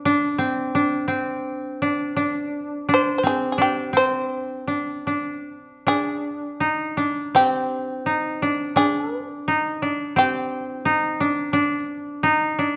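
A koto opens this solitary, meditative fragment of Japanese traditional chamber music, its woody, dry tone played with fingerpicks in a narrow register as the second line. At 2.9 seconds a shamisen enters up front with the melody, its bright, buzzing, plectrum-plucked voice sounding percussive and fretless above the koto. The pulse floats freely between 74 and 88 BPM in a rubato 4/4, drawn from a hirajoshi scale on C and tuned slightly below concert pitch at A4 = 436 Hz. The shamisen falls silent at 11.2 seconds, leaving the koto to carry on alone until the cut at 12.8 seconds. A moderate recital-hall reverb surrounds the pair, and the recording holds nothing above 10.6 kHz.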